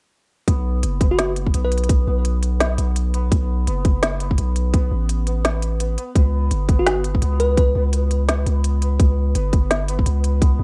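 A hard-clipped electronic kick sits up front in this dark, heavy half-time drum and bass excerpt, joined by an overdriven kit with a woody snare and crisp hi-hats, both colored by studio reverb and cassette tape. Beneath them, a deep, mellow 808-style bass holds long sine tones from F#1 to C#2, while a hammered santur plays shimmering, ringing arpeggios around B3 with analog delay and cassette tape, quietly in the mix, as the harmony moves from B5 to G(#11). A bell-like FM electric piano with a sparkling noise layer, chorus and tape echo adds brief phrases at 1.1 and 6.8 seconds, all within a home cassette recording with little reverb.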